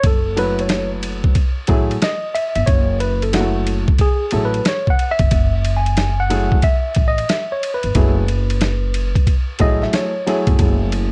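A swung groove at 91 BPM in 4/4, with 65% swing on the sixteenths, drives this nocturnal, cool jazz-hop piece in F# dorian. The sampler-style boom bap drum kit sits up front, compressed, pitched down and gritty, with a thumpy kick, a medium-tuned snare, hi-hat and ride cymbal, all carrying a tape-tinged color. Beneath it, a pizzicato upright bass on steel strings holds the low end, acoustic and woody and also up front. An intimate upright piano enters at 0.4 s with audible action noise and plate reverb, accompanying over a single F#m9 chord. The melody belongs to a tine electric piano that solos from 0.0 to 10.6 s, worn and slightly out of tune, lightly overdriven and colored by plate reverb and analog delay. A light reverb surrounds the mix, and the passage is cut from a longer piece.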